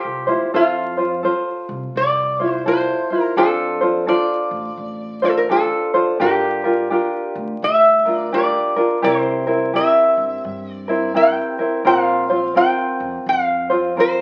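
Swung eighths in 4/4 carry this sunny, relaxed Hawaiian excerpt, where a metallic, nasal resonator slide guitar played with fingerpicks sings the melody up front over a light, fingerpicked tenor ukulele and a woody, growly pizzicato upright bass sitting far back in the mix, all of it wrapped in moderate large-studio reverb and the crackle of a very old 78 rpm record as the chords move from Fmaj7 through Dm7, Gm7 and C7 to Bbsus2.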